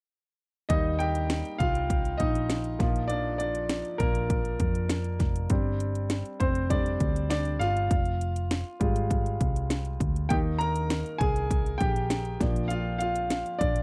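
Warm and anthemic, this piano-driven pop excerpt in Eb major moves at 100 BPM in a straight 4/4. A clear, up-front grand piano carries the lead over Eb, Bb, Gsus4 and Fmadd9 chords. Beneath it sit a dark, round, amped hollow-body picked electric bass and an electronic, layered house drum kit with a punchy kick, cracking snare and metallic hats, all from 0.7 to 13.8 seconds in a dry, close 1970s-style studio sound.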